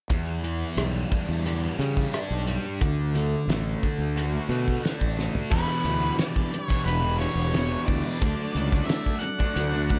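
A straight 4/4 groove at 89 BPM anchors this hypnotic, mysterious slice of psychedelic rock in E dorian, cut from a longer piece. A cloth-damped drum kit sits up front in a small room with a thuddy, rolled-off character, its fat snare, tight kick and dark cymbals joined by hi-hat, rim click and toms, while a round, punchy fuzz bass, fingered and overdriven, holds the low end. Above them a thick, double-tracked fuzz guitar plays a bright picked riff through distortion and phaser, moving between Em7 and D. After a drum fill at 5.2 seconds, the second section opens at 5.5 seconds with an octave-fuzz lead guitar carrying a dark, picked melody through distortion and analog delay. A buzzy vintage combo organ enters at the same moment with clean, sustained chords and heavy vibrato, tucked in the background against the studio ambience.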